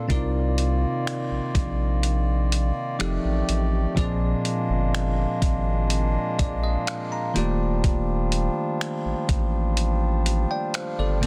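A bell-like, clean tine electric piano and a reedy, breathing pedal harmonium with sidechain pumping open this longing, sensual contemporary R&B excerpt at a slow 62 BPM, moving through Cm11, F13, Bb7 and Ebmaj9#11. A deep, saturated sine sub bass and a gritty, sampler-style soul drum kit of finger snaps, hi-hat and thumpy kick sit up front, while the electric piano adds a fill from 5.9 to 7.8 seconds. The sound is dry, dense and heavily limited.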